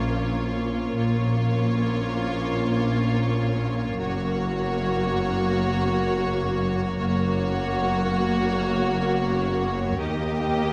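A distant, intense violin section carries the melody high above a lush second violin line and a focused viola accompaniment in this heroic, dramatic cinematic build-up, cut from a longer piece and moving in free time. Close, smooth cellos and distant double basses anchor the bass while a mellow French horn section sits in the background with tight sustained chords, all moving from Bbm to Gb at 4.0 seconds and reaching Eb at 10.0 seconds. A moderate scoring-stage reverb gives the orchestra a sense of space.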